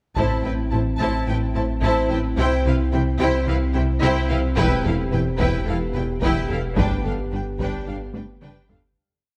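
Tense and vast, this short cinematic piece blends orchestral and electronic scoring at 109 BPM in A minor, moving through Am, C, Em and G as two lush, vibrato-rich violin lines and a rich studio viola section drive a bowed ostinato over mellow, close-miked French horn chords. Underneath, a symphonic cello section carries a driving bass ostinato in the background, doubled by a distant, clear double bass section and a deep, clean sine sub bass that sustains to 9.0 s. A band-limited, vintage-sounding taiko ensemble played with hard sticks pounds a big ostinato from 0.2 to 1.3 s, returns at 4.6 s and closes with a fill from 8.2 s as the piece fades out on a moderate scoring-stage reverb.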